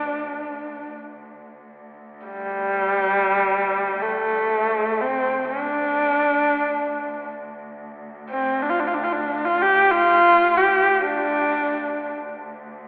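Solemn and vast, this Mongolian folk fragment in free time and D yu mode sets a rich, husky horsehead fiddle melody, close and up front, between G3 and G4 over a dark, woody cello drone on D2 that sits distant and soft-attacked until 12.9 seconds, with both bowed lines bending through vibrato and portamento inside a long church reverb whose telephone-like tone frames the cut from a longer piece.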